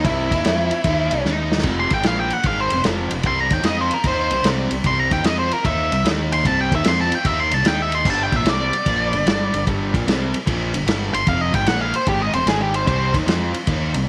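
A dark, up-front octave-fuzz lead guitar solos from 0.0 to 13.1 seconds with distortion and tape echo over a double-tracked crunchy overdriven guitar riff bathed in spring reverb, a round fuzz-driven fingered bass, and a muffled, lo-fi vintage drum kit with a punchy kick and a fill at 1.2 seconds, giving this swaggering, gritty blues rock and southern rock power-trio excerpt a swung 150 BPM drive through chords like C7, Eb5 and F5 in a small, lightly reverberant room.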